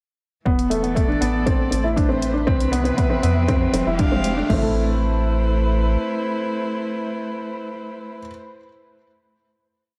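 A straight four-on-the-floor pulse at 119 BPM drives this short, cinematic and hypnotic piano and strings electronica piece in A minor, where a woody, slightly detuned upright piano ostinato with audible action noise and delay sits up front over sul tasto string quartet chords pumping with sidechain, a round, nasal analog bass with long gliding notes, a punchy overdriven deep house kit with toms and crash joined by a restrained high-pass-filtered electronic hi-hat, and a very quiet riser from 2.2 to 4.5 seconds building into a final Amadd9 chord held from 4.5 seconds in a dark, moderate concert hall reverb.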